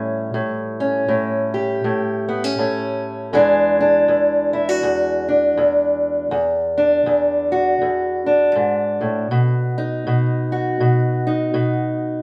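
A swung-eighth 4/4 groove carries this soulful, rollicking blues excerpt, where a solo fingerpicked steel-string acoustic guitar with a dark, boxy parlour tone sits up front in a lightly reverberant live room, moving from A7 to E7 at 3.3 seconds and arriving on B at 9.3 seconds.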